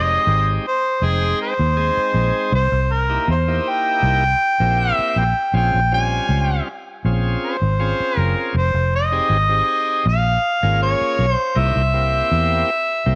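A smoky, soulful straight-eighth soul blues in F minor at 80 BPM opens with all three parts together: a mellow, punchy harmonica carrying the melody up front with scooped notes and slapback echo, a bright, shouting tonewheel organ lightly overdriven through a slow rotary speaker, and a dark, round, foam-muted fingered electric bass, all moving through Fm7, C7#9 and Bbm7 in light studio reverb across this 13.2-second excerpt of a longer piece.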